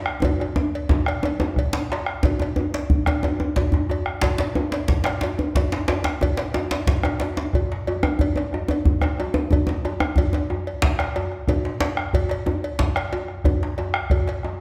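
West African traditional drumming from a drum ensemble, this short excerpt cut from a longer piece feels powerful and festive, moving at 121 BPM counted in dotted quarters within a straight 12/8 metre. A deep, dark bombo sits up front in a small-room sound, anchoring the ensemble from its entry at 0.1 seconds. Two djembes join almost immediately: one is tight, cracking and band-limited with a vintage character, while the other is warm, deep and up front in a live room. A metallic cowbell, close and dry, rings alongside them from 0.2 seconds. The opening is given over to a drum fill that runs until 2.2 seconds, after which the ensemble settles into the main section, with the warmer djembe dropping out at 13.6 seconds shortly before the others finish. The whole is set in a wet recital-hall reverb that lends the group a sense of space.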